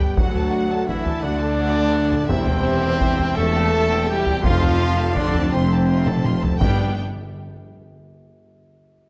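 Heavy-stick taiko drums drive this adventurous, triumphant cinematic orchestral cue in 6/8 at 56 BPM, where a lush violin section sings the melody over a soft-attack second violin line and expressive violas with portamento, dark, distant French horns and clear trombones hold sustained chords alongside a mellow solo trumpet's stabs, and a rich double bass section with smooth cellos anchors a D, C/E, F progression in a moderate concert hall reverb, until a drum fill at 6.1 s leads to a round timpani hit on the G chord at 6.6 s.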